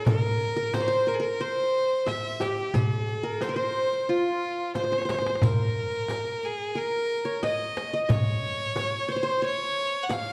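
An up-front, intensely bowed violin carries the melody with vibrato and an airy bow in this stately Arabic maqam ensemble excerpt, while a plectrum-plucked qanun with triple strings and a bright edge plays a second line beneath it. A clay-shell darbuka and a hard-handed frame drum share the percussion in straight 4/4 with a softly played, jingling riq, the darbuka and riq sitting in the background, and a drum fill at 4.7 s leads into a new section at 5.4 s. A dark, warm production and a wet recital-hall reverb give the ensemble a spacious, resonant glow.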